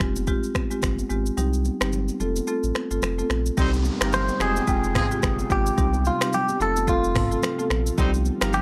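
A sultry, mellow afrobeats groove at 109 BPM opens with woody, up-front marimba, a round sine sub bass, an electronic afro-pop kit with a deep kick, metallic hats, snaps, rim clicks, shaker and toms, and very quiet bright, high-tuned congas, moving among F minor, C minor and F major chords with a lilting swing. The kick drops out briefly before a new section at 3.6 seconds, where a very quiet downlifter and a clear, vintage horn section with light vibrato and tape echo enter in the background. Soon after, a twangy, direct-recorded clean electric guitar carries the melody up front with its own tape echo, while an ethereal, detuned pad adds slow-swelling sustained chords beneath, all within a dry, gritty, transformer-saturated sound.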